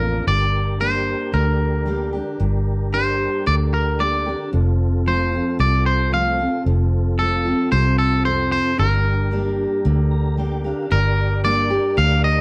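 The muted electric bass sits up front, dark and round with a foam-muted, amped tone, anchoring this dusty, lonesome honky-tonk and classic country piece in G minor at 113 BPM in a straight 4/4. A clean, twangy electric guitar carries the melody, also up front, while a full-bodied jumbo steel-string acoustic guitar picks out the accompaniment beneath it. A smooth tonewheel organ with chorus vibrato, key click and a stopped rotary speaker adds a soft layer and steps forward with a fill from 9.8 to 10.9 seconds, just before the music moves into a new section. The harmony moves from G minor to F and back to G minor. Light reverb and a dark, warm production give the short excerpt, cut from a longer piece, its lonesome mood.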